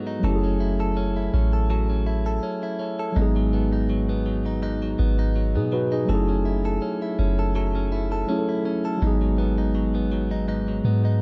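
An echo-heavy mix with light digital reverb sets a longing, late-night tone for this short excerpt of contemporary R&B in F# dorian, moving at 82 BPM in 4/4 with a gentle 16th-note swing. A mellow tine electric piano carries the accompaniment from the start, its clean, direct tone sitting between F#3 and B4. Alongside it, a bright, picked electric guitar recorded direct plays arpeggios, its compressed, scooped sound trailing off in dub echo. At 0.2 s a soft 808-style bass enters up front, deep and round with a fast attack that decays into a dark, sine-like low end. The harmony alternates between F#m7 and G#m7, returning to F#m7 at 6.1 s before shifting once more to G#m7 at 9.0 s.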